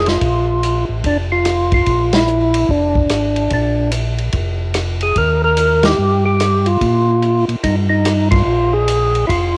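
A swung 4/4 groove drives this bluesy soul jazz organ trio excerpt, where a fat, lightly overdriven, percussive tonewheel organ carries the melody through a slow rotary speaker, a dark, round second tonewheel organ with chorus vibrato holds down the bass, and an acoustic drum kit with a punchy kick and rolled-off top plays hi-hat, ride cymbal, rim clicks and snare beneath band accents at 2.1, 5.8 and 8.3 seconds, set in light studio reverb on a homespun cassette recording.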